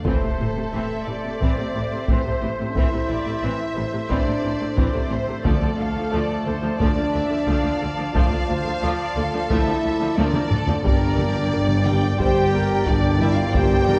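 A steady 4/4 pulse at 89 BPM drives this heroic, epic orchestral film-score excerpt, its straight feel set by a taiko ensemble struck with hard sticks, with a drum fill at 10.2 seconds. A huge, dark impact sits in the background at the opening, ending by 2.8 seconds, while the harmony moves from A minor to D minor at 5.5 seconds and to G minor at 10.8 seconds. Two violin sections carry the top: one plays the focused, vibrato-rich melody, the other a smooth, distant second line beneath it. Close-miked French horns and a punchy, roomy woodwind section hold sustained chords, and an intense viola section adds accompaniment in the background. Underneath, an expressive cello section with soft attacks and an even, bowed double bass section supply the low end. A wet concert hall reverb wraps the dark, warm production in a broad sense of space.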